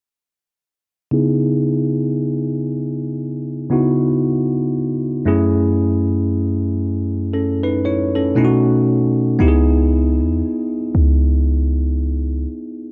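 Longing and sensual, this slow contemporary R&B excerpt in C# minor moves at 58 BPM with a lightly swung sixteenth feel, opening at 1.1 seconds on a bright, bell-like tine electric piano that sits up front under a low-pass filter and a filter sweep, moving through C#m7, F#m9 and B7. At 9.4 seconds a clean 808-style bass enters with a deep, boomy, sine-like tone and fast, decaying attack, as the harmony returns to C#m7. Light reverb lends a digital ambience to the sound.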